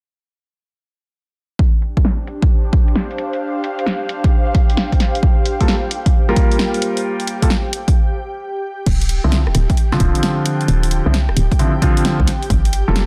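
UK garage in a two-step style, this moody, late-night passage is cut from a longer piece and moves with a swung shuffle over a Dm7 to Gm7 progression that later reaches Gm9. An overdriven, punchy electronic kick sits up front from 1.6 seconds, joined by a dry analog drum machine playing crash, hi-hat, rim click and a punchy, overdriven snare, with its hats, snare and cymbals low-pass filtered and the drums put through a filter sweep during the opening section. Behind them, an ethereal pad of detuned, unison sawtooth and triangle tones holds sustained chords with slow attack, ensemble chorus and sidechain pumping, while a soft, breathy pad with a vintage warble and noise layer adds texture, also pumping, until 8.0 seconds, when a brief break arrives. A concert grand piano with deep low end plays up-front stabs from 5.6 seconds, softened by a low-pass filter and tape echo and given its own filter sweep in the second half. 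From 8.9 seconds a hollow, knocking FM bass enters with a bouncy, fast-attack, decaying tone, anchoring the closing section in a dense, heavily limited modern master with digital ambience.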